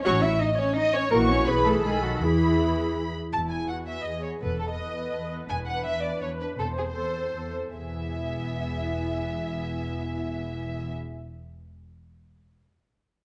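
A brisk, straight 3/4 pulse running between 146 and 170 BPM drives this spirited, cheerful classical-period movement for string orchestra in E major, cut from a longer piece. A muted symphonic violin section carries the melody from 0.1 s, its lush, vibrato-rich tone sitting close, while a muted studio violin section plays a second line with a smooth top. A veiled viola section supplies accompaniment from a more distant position with light vibrato. Beneath them, a con sordino cello section and an up-front double bass section share the bass. The harmony moves from F#m/A through F#7/A# and B7 to E, later touching Am/E before returning to E, and the tempo slows between 5.0 and 7.8 s. A moderate recital hall reverb and a dark production give the whole string body a soft-edged, hushed glow.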